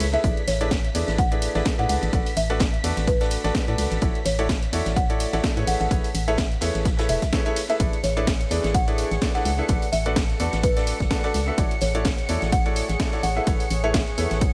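Piano house at 127 BPM in A major, euphoric and joyful, where a bright, brilliant grand piano riff with tape echo sounds together with a punchy analog kick, a layered house kit with cracking snare, a very quiet airy big-band kit, a hollow organ-like FM bass, distant symphonic strings holding sustained chords, a buzzing marimba melody with soft mallets, and a warbly lo-fi pad entering at 8.1 seconds, all moving through E7/A, Bm7/A, Dmaj9/A and Amaj9 with sidechain pumping on the strings, piano, bass and pad in a dry, echo-heavy mix.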